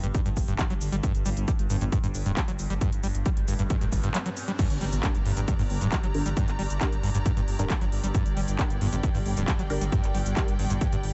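A squelchy, distorted acid riff sits in the background of this dark, industrial peak-time techno cut in G minor at 135 BPM, over a rumbling detuned saw bass, a resonant drone with moving overtones and a layered kit of smooth hats, shaker, handclaps and crash, all pumping to the sidechain, while an up-front overdriven kick drives beneath them. A very quiet riser and impact arrive at 3.0 seconds, leading into the drop at 4.6 seconds, where a bright, intense bowed string section with vibrato enters on a G minor chord. A muted, mellow dub chord stab with phaser, lush chorus and delay follows at 5.0 seconds, in a dry mix that stays dark up top.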